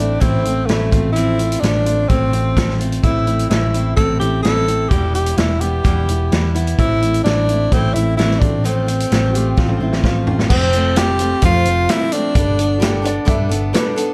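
A straight, steady 4/4 pulse drives this wistful, reflective folk rock passage with a heartland rock feel, cut from a longer piece. A vintage drum kit with a punchy kick and medium-tuned snare, recorded naturally in a small room, sits up front alongside a round, amped hollow-body short-scale electric bass playing low picked notes. A picked steel-string acoustic guitar supplies accompaniment, while a close-miked tenor saxophone carries the melody in a pop style, its bright tone marked by vibrato and scooped notes. At 9.3 seconds a clear, woody upright piano with short sustain adds a second line, and a drum fill at 9.6 seconds leads into a new section at 10.5 seconds where the harmony shifts to F and Gadd9. The production is dark with light reverb.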